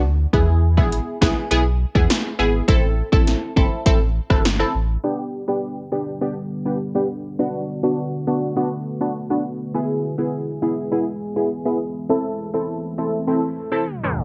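A punchy, bright chord stab with a detuned sawtooth bite and chorus carries this sunny, summery dancehall excerpt in G major at 102 BPM. A deep sine sub bass opens the excerpt, and the stab enters at 0.3 seconds together with an overdriven deep house drum kit. The drums drop out at about 4.6 seconds and the bass at 5.0 seconds, when a filter sweep begins. A moody, dark ambient pad with sidechain pumping, chorus and reverb joins beneath the stab at 5.6 seconds. Everything is wrapped in warbly cassette-tape ambience that ends in a tape stop at 13.9 seconds.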